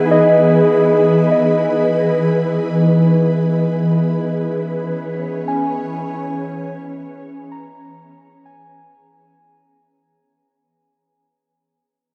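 A dreamy, reverb-soaked mix with a huge, long-tailed ambient space opens this melancholic yet serene ambient excerpt in free time, which fades out from 0.3 to 10.0 seconds. Up front, an ethereal, detuned pad holds slow-blooming sustained chords from Emaj7 to C#m7 at 2.8 seconds, shimmering through ensemble chorus and phaser. Behind it, muted, felt-like synth keys play intimate, quickly decaying arpeggios, softened by chorus and analog delay.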